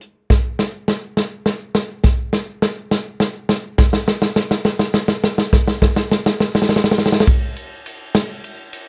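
This is a dry, close recording in a 1970s studio style, with the kit sitting up front in a natural-sounding studio room. The folk piece is cut from a longer work and moves in a straight 6/8, its mood both nostalgic and anthemic. The only instrument is an acoustic country drum kit with hi-hat, kick drum, ride cymbal and snare. The punchy kick and medium-tuned snare stand out, and the whole kit has a natural tone. From the start to 7.3 seconds the drums play a fill that serves as a build-up. A new section then follows until the clip ends at 8.9 seconds.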